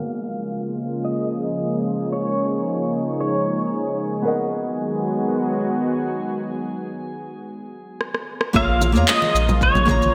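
Cut from a longer sunset chillout piece, this wistful, relaxed passage opens with a clean, bright pedal steel guitar up front, its slide melody and volume swells carried on ensemble chorus and delay. Beneath it, a small fingerpicked nylon-string guitar ripples through digital delay, while a thick, detuned sawtooth pad holds lush sustained chords over an A#m7 that moves to G#m7 around 4.3 seconds, all at an easy 112 BPM in straight 4/4. A calm, glassy texture of drifting sine overtones floats quietly in the distance from 0.8 seconds, and a filter sweep moves through the sound until 8.5 seconds. After an electronic drum fill of rim click, shaker, handclaps and congas at 8.0 seconds, the groove arrives at 8.5 seconds with a deep, round sine sub bass and an overdriven, layered kick set back in the mix, joined by warm acoustic congas as the pedal steel returns and the harmony settles back on A#m7. 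The whole piece sits in a wet hall reverb with a bright, 1980s-style digital sheen.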